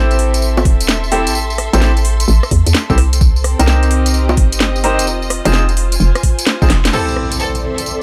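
A dry excerpt of moody, late-night two-step UK garage at 129 BPM in A minor, where bright, short piano stabs through a low-pass filter and delay ride over a hollow, bouncy FM bass, a biting symphonic string bed with sidechain pumping, a garage kit of cracking snare, metallic hats, crash, bongos, tambourine and rim clicks, and a knocking, tape-warm electronic kick up front, all moving through Am7, Cm7 and Fm7 before a drum fill at 6.7 seconds leads into an electronic impact at 6.9 seconds, a brief distant violin line with digital delay, and a silky, warbling string machine that drifts in behind at 7.4 seconds.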